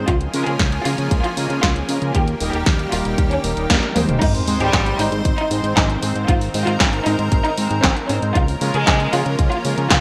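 A punchy, up-front house drum kit with bright hats, handclaps and gated-reverb snare drives this sunny, playful italo disco excerpt at 116 BPM in Ab major, joined by a punchy electronic kick, a fat sawtooth bass, a lush detuned unison pad with chorus, brassy synth stabs in the background, and a distant, smooth bowed violin section carrying the melody through digital delay, with a drum fill at 3.8 seconds leading into an impact and a background sub drop from 4.3 seconds, all in a bright 1980s-style digital production.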